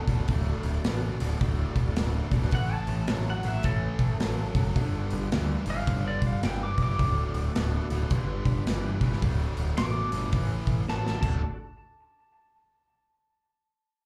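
Opening at once with a twangy, slightly broken-up lead guitar melody over a sludgy, double-tracked distorted guitar riff and a reedy tonewheel organ holding sustained chords through a slow rotary speaker in the background, this raunchy, gritty swung blues rock and southern rock piece quickly adds a growling, overdriven picked bass and an up-front big rock drum kit with a punchy kick and bright cymbals, captured live through a club PA with light reverb, before a drum fill at 10.9 seconds leads into a new section at 11.4 seconds.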